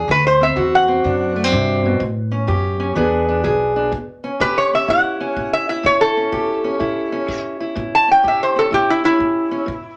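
A fingerpicked steel-string parlour guitar, dark and boxy, opens alongside a woody pizzicato upright bass in this rollicking, laid-back slice of acoustic country blues with a swung 4/4 feel, while a lap resonator guitar played with a steel bar takes the melody up front with a metallic, nasal slide voice over D7, A7 and E7 changes. The bass drops out at 3.9 seconds, leaving the guitars and a tight brushed kick drum sitting in the background of a small room, all wrapped in moderate studio reverb.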